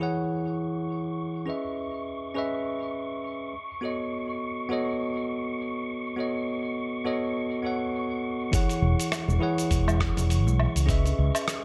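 A bell-like, clean tine electric piano with delay carries this smooth, wistful sunset chillout passage at 102 BPM, moving through E6/9, C#m7 and B9 chords over an airy, breathy wind-like tuned noise texture that sustains throughout. At 8.5 seconds a gritty, compressed sampler-style soul kit with filtered hi-hat, rim click, shaker and woodblock joins a thumpy electronic kick, both re-recorded in a large room, with a swung 16th-note feel. A dark, round fretless bass sits up front from 8.8 seconds, and soft-handed vintage bongos and congas add a faint layer from 9.3 seconds in this excerpt cut from a longer piece.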